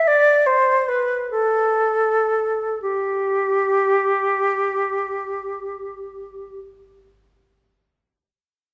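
A mellow, airy silver concert flute sits up front with expressive vibrato and soft attacks in this flowing, dance-like excerpt of a baroque-style classical fantasia for unaccompanied flute in G major, played in free time and tuned to A4 = 439 Hz. It eases to a slower pace over the first 2.8 seconds and moves between G4 and D5 until 6.6 seconds, captured in a wet recital hall with a faint mains hum.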